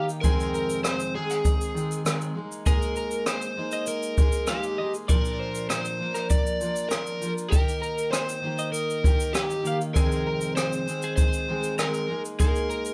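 Acoustic pop with a carefree, easy-going feel, cut from a longer piece, in which an up-front overdriven slide guitar played with fingerpicks carries the melody over a full-bodied jumbo steel-string acoustic guitar with audible finger squeak, a bright, clean, compressed twelve-string electric guitar picking arpeggios, and a natural-sounding, up-front jazz brush drum kit with a boomy kick, rim click and shaker, all captured as a band playing live in one room with light reverb.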